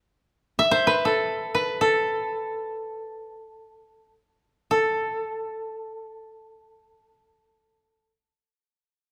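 This austere, solitary piece of Japanese traditional chamber music unfolds in free time on the A hirajoshi scale, tuned to A4 = 441 Hz, and is cut from a longer work. A solo koto played with fingerpicks sounds from 0.6 to 8.1 seconds, staying between A4 and E5 with a woody, mellow, up-front tone, and it slows down through the opening 4.7 seconds before a new section begins. Its dry close sound sits within a moderate recital-hall reverb lasting about 1.7 seconds.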